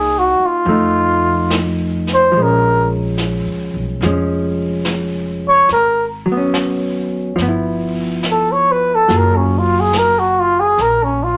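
A flugelhorn carries the melody from the first moment of this smoky, melancholic jazz ballad, with a hollow-body electric guitar and a pizzicato upright bass beneath it. Brushes on snare and hi-hat join at 0.7 seconds, setting a swung 4/4 at 71 BPM. The flugelhorn sits up front with a warm tone, light vibrato and scooped notes, soloing through the whole 11.4-second fragment of a longer piece. The guitar is dark, clean and compressed, played with the fingers and placed close to the listener, while the bass sounds woody and dark on steel strings, and the medium-tuned snare has a natural small-room quality. The harmony drifts through Cm7b5, F7, Bbm7, Abm7 and G6 before settling on Gbmaj9, all wrapped in a moderate club reverb.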